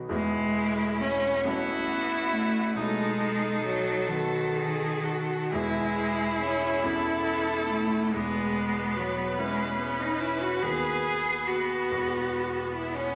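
A rich, distant violin carries the lyrical melody with expressive vibrato and portamento, while an up-front cello sings a clear, smooth second line beneath it in this serene, rubato classical movement for piano quartet in 6/8, cut from a longer piece. A close viola enters at 1.5 seconds with even, vibrato-tinged accompaniment, and a concert grand piano supports the ensemble with deep bass, an open tone and long sustain. The strings and piano sit in a wet recital hall reverb with a soft, rounded top end.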